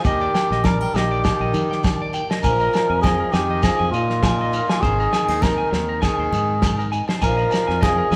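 A moderate large-room reverb surrounds this short, carefree highlife guitar band cut, played live together at 100 BPM in 4/4 with a light swing in Bb mixolydian, moving through Ebmaj7, Bb7sus4 and Abadd9. A cup-muted trumpet sits close and up front with a veiled, breathy tone and light vibrato, while a whispered tenor saxophone traces a soft second line in the background and a twangy electric guitar at the edge of break-up picks bright arpeggios from 0.1 s. Underneath, a round, punchy fingered electric bass and a dry, muffled soul drum kit with a fat snare and tight kick carry the groove, joined by very quiet congas, a grainy shekere, distant ringing agogo bells entering at 0.3 s, and a boxy fingerpicked swing-style acoustic guitar.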